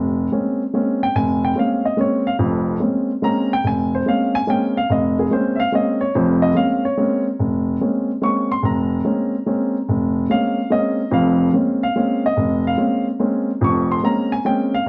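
A large studio reverb bathes this short jazz recording, giving the dark, up-front piano a sense of space around it. The mood is cool and spiritual, moving at 144 BPM in a swinging 3/4 waltz feel centered in Bb dorian. An upright piano carries the whole 14.9 seconds on its own, its woody, mellow tone reaching from the low F1 up to Db6. The passage rests on a single Bbm9 harmony, which lends it a meditative, suspended quality. Cut from a longer piece, it leaves the impression of a patient modal waltz caught mid-thought.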